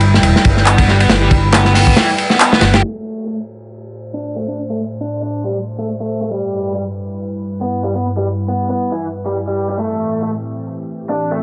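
A swung sixteenth-note breakbeat in 4/4 drives this energetic, funky excerpt from a longer piece, its crunchy, saturated acoustic kit of punchy kick, medium-tuned snare, hi-hat and dark ride sitting up front in a small room, while an overdriven fingered electric bass adds warm, amped low notes beneath. At 0.7 seconds electronic handclaps with a tape-warm analog character join the kit, and a raw, lo-fi garage guitar enters with a picked, overdriven riff, filtered and trailed by dub echo, carrying on to the end. Drums, claps and bass fall away by 2.8 seconds, leaving the guitar over a swirling, nasal analog pad of detuned sawtooth and wave-folded sine tones that breathes with phaser, chorus and sidechain pumping. From that point a filter sweep moves across the pad as the harmony alternates between Am7 and G6, and the whole recording has a rolled-off top, with nothing above 10.5 kHz.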